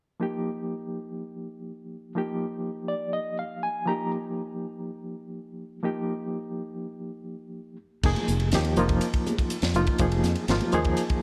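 Electric jazz fusion with a driving, funky mood, cut from a longer piece, opens on a barky, reedy electric piano alone, lightly overdriven with tremolo and up front, holding an F9sus4 chord and playing a fill from 2.7 to 4.1 seconds. At 8.0 seconds a tight funk drum kit with a high-tuned snare and tight kick arrives with a growly fingered electric bass as the harmony moves to Fm11. Very quiet, ringing congas played with soft hands sit distant in a large room, and light reverb frames the short passage.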